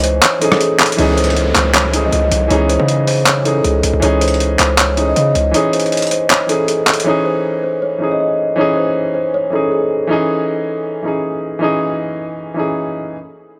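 A woody, mellow kalimba melody opens over a clear, worn grand piano, a saturated, heavy 808-style bass and a gritty, overdriven sampler-style drum kit of handclaps, hi-hat and rim click, all entering together on a C#m add9 chord in this menacing, hard-hitting half-time trap excerpt at 158 BPM in C# harmonic minor. An electronic downlifter drifts in the background early on, and the up-front bass drops out at 5.5 seconds, followed soon after by the drums. The low-passed kalimba then rings on until 9.9 seconds, leaving the piano alone in a light digital ambience until 13.2 seconds.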